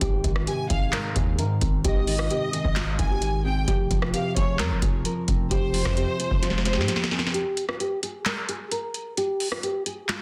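A half-time trap groove from a booming analog drum machine sits up front, with a deep kick, crisp snare, metallic hats, handclaps and rim clicks, while a distorted, heavy 808-style bass rumbles in the background over a shift from Ab to Fm. A dark, thumb-plucked nylon-string guitar carries the melody through a low-pass filter and digital delay, and a felt-muted upright piano adds mellow, intimate accompaniment with audible action noise. From 0.5 seconds a lush, bowed violin section with vibrato floats a delayed second line above, giving this dreamy yet triumphant hip hop cut a dense, heavily limited finish before a drum fill leads into a break at 7.3 seconds.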